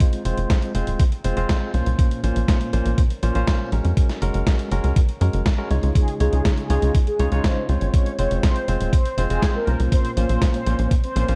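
Dark, crackling vinyl texture and digital ambience frame this playful, romantic italo disco excerpt, cut from a longer piece. A thumpy, up-front electronic kick and a gritty, dusty sampler-style kit of hi-hat and snare, re-recorded in a large room, drive a tight, punchy, nasal sequencer bass. A barky tine electric piano plays fast-tremolo stabs through a combo amp and a low-pass filter throughout, and a mellow, brassy, detuned synth brass melody with chorus, vibrato and tape echo joins it at 6.0 seconds.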